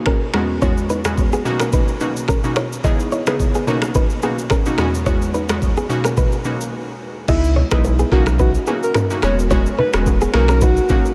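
A breathy alto saxophone with light vibrato and a smooth top takes the solo melody at 7.3 s in this joyful, sunny afrobeats cut at 108 BPM in B major, arriving after a brief break at 6.7 s together with a deep, round sub bass and very quiet soft-handed congas and bongos, over a bright, clean picked electric guitar riff with warbly pitch drift and diffuse delay, a glassy, crystalline wavetable pluck with chorus and a filter sweep, and an up-front electronic drum kit with knocking kick, snaps, rim clicks and shaker, the whole mix soaked in huge, dreamy reverb.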